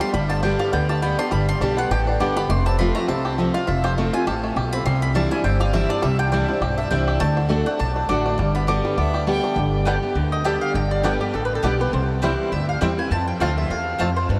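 Lively, rustic bluegrass opens with a full-bodied dreadnought guitar, twangy fingerpicked banjo arpeggios, a woody double-strung mandolin taking a solo of up-front stabs, and a thumpy gut-string upright bass, the banjo and mandolins touched with tape echo, before a clear, earthy fiddle slips in briefly at 9.0 s in the background and a bright second mandolin carries the melody from 10.3 s, the whole swinging mix soaked in a huge, dreamy reverb.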